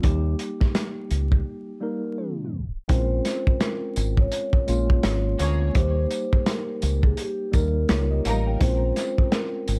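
A crunchy, saturated breakbeat kit with a punchy kick, a round, deep fingered bass and a mellow tine electric piano filtered through cassette-tape grit open this tough, gritty boom-bap hip-hop excerpt at 84 BPM in swung 4/4 and Bb dorian, before a brief break and a tape stop at 2.2 seconds give way to a soft-mallet vibraphone melody with digital delay from 2.9 seconds, a jingly tambourine tucked in the background soon after, and lush, bowed string stabs from 5.4 seconds, all over a dark, dry production dusted with vinyl crackle.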